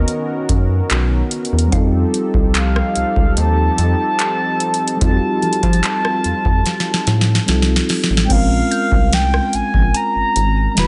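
This contemporary R&B excerpt moves at a slow 73 BPM in straight 4/4, set in Bb dorian and tuned slightly below standard pitch, with a longing, moody feel. Up front, a horn-like synth lead carries the melody with a round, warbling vintage tone, vibrato and chorus, over a clean tine electric piano coloured by phaser and a smooth, detuned analog pad with chorus that holds sustained chords until 8.3 seconds. A rubbery, hollow square bass bounces beneath, while a booming analog drum machine sits forward with a deep kick, crisp snare, handclaps, rim clicks, metallic hi-hats and a crash, and rolls into a drum fill from 6.7 seconds. From 1.7 seconds a woody, mallet-like FM pluck adds a faint background texture through chorus, phaser and tape echo, and a barely audible downlifter passes near the start. The harmony shifts from Bmaj7 to F7 and settles on Bbm7, all inside a digital ambience with a soft, rolled-off top end.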